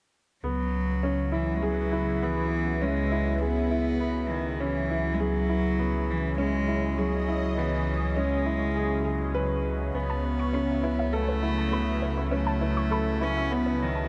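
A huge, ambient reverb hangs over this intimate, moving piece of piano and strings electronica, cut from a longer work. A single cello carries the melody up front with a rich, reedy gut-string tone in a period style, bowed close to the listener. Alongside it, a baby grand piano plays a boxy, softened riff through a low-pass filter, while a deep, rumbling detuned saw bass holds a dark, beating low note. A lush, thick unison pad sustains chords behind them, its bright sawtooth edges shimmering with chorus and phaser. The harmony rests on C#m7 until 9.9 s, when it shifts to Aadd9/C# and a dusty, warbling lo-fi pluck joins in the background with mellow arpeggios colored by chorus and tape echo.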